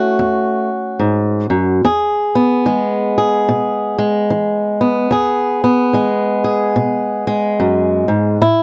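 Blues in a laid-back, soulful swing, this short piece cut from a longer performance features a lone fingerpicked acoustic guitar, dark and boxy and sitting up front, moving from an A chord to E at 1.8 seconds in a dry, close recording with a 1970s studio feel.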